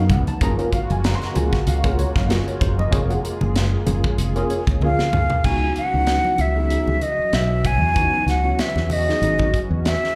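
A worn, slightly out-of-tune tine electric piano, lightly overdriven with lush chorus and slapback echo, opens this slick, bright electric jazz fusion excerpt alongside a thick, detuned sawtooth pad that holds sustained chords through chorus and phaser. A round, fingered electric bass sits up front, and a polished acoustic drum kit with a punchy kick, high-tuned snare, hi-hat, toms and crash drives a swung sixteenth-note feel, while very quiet, close and dry congas add hard-handed, thick-skinned percussion. The harmony rests on an F#maj9 chord until a fill from the electric piano starting at 4.2 seconds and a drum fill lead into a shift to C#m11 at 5.4 seconds. A breathy concert flute enters at 4.8 seconds, carrying the melody up front with a straight tone, soft attack and its own slapback echo. The whole band sounds like a live club gig heard through the venue's PA, with club reverb and small-room ambience around it.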